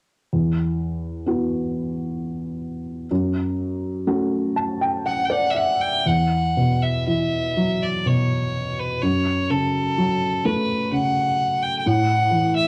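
A clear, earthy bowed fiddle with light vibrato enters at 5.1 seconds to carry the melody of this longing, mournful Celtic slow air, played rubato in 3/4 at roughly 58-67 BPM. Beneath it, a soft, felt-muted upright piano with audible action noise, short sustain and a cassette-tape tinge accompanies from the start, moving between Esus2 and F#m chords and adding a gentle fill from 4.1 seconds. Plate reverb on both parts and a modest small-room ambience give this intimate home cassette recording, cut from a longer piece, a natural, mellow feel.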